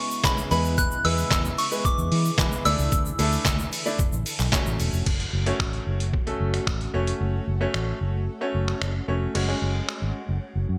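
Bittersweet yet energetic, this short dance-pop passage, cut from a longer piece, sits in a steady 4/4 with a straight feel and a bright 1980s-style digital sheen under light reverb. A soft, pure FM synth bell carries the melody with chorus and digital delay, but only for the opening 3.7 seconds, while a clear, polished concert grand piano with a deep low end and short sustain plays the accompaniment, pumping with sidechain. Behind them, a shimmering, ethereal pad holds sustained chords in the background, its detuned unison, octave-up shimmer and granular texture softened by chorus, built-in reverb and the same sidechain pumping. A gritty, pitched-down, sampler-style trip hop kit sits up front with a thumpy kick, medium-tuned snare, hi-hat, handclaps, finger snaps and crash under gated reverb, alongside a grainy, bright egg shaker in the background from 0.1 until 5.1 seconds. A dark, round, foam-muted electric bass enters at 0.5 seconds, amped and up front, pulsing with sidechain as the chords move from C#m7 through E and Dsus2 to F#m before settling on F#sus2.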